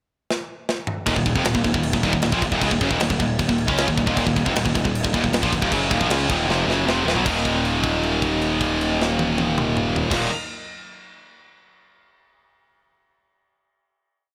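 An up-front metal drum kit with a tight kick and rolled-off top drives this epic, relentless heavy metal piece at 155 BPM in Eb minor, opening with a fill before three bright, picked distorted guitars (a high-gain one and a tight one sitting in the background, plus a double-tracked, very quiet one) enter at 1.1 seconds on a power-chord riff doubled by a punchy, fuzz-overdriven electric bass in driving eighth notes, while a very quiet, airy, breathy pad with chorus joins at 2.6 seconds and a second drum fill leads into a held final chord from 7.3 seconds.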